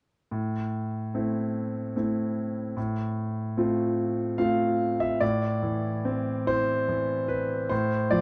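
A clear, intimate concert grand piano sits up front with audible action noise and deep bass, playing a dark, wistful classical solo in A minor at 73 BPM in a rubato 3/4, moving between A minor and F over A from 0.3 to 8.2 seconds under a moderate plate reverb in a dark, warm production, in this short fragment cut from a longer piece.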